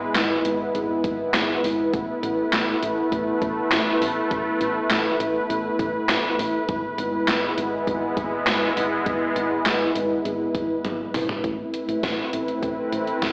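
A sweeping, detuned sawtooth pad with chorus and a dark, punchy FM bass open this driving, melancholic synth-pop excerpt at 101 BPM, joined at 0.2 seconds by an up-front gated 80s drum machine with thumpy kick, overdriven gated-reverb snare, handclaps, hi-hat and toms, which plays a fill at 10.8 seconds before the chords move from E/G# and Asus2 to Amadd9 at 11.4 seconds, the whole mix carrying a booth ambience, large studio reverb and an AM radio tint.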